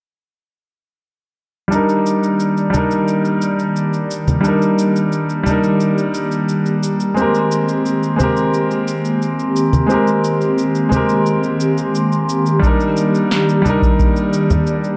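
Sunset chillout with a sunny, blissful mood, built on a brilliant, up-front concert grand piano whose accompaniment carries vintage 12-bit sampler grit, a low-pass filter and tape echo, over an airy, breathy pad with chorus and a filter sweep. Low-tuned, thick-skinned congas and punchy, layered electronic cabasa and snare supply the percussion, and a deep, tape-warm electronic kick enters at 12.6 s as the harmony moves from Abmaj9 back to Ebmaj7. A moderate plate reverb surrounds the dark, warm production.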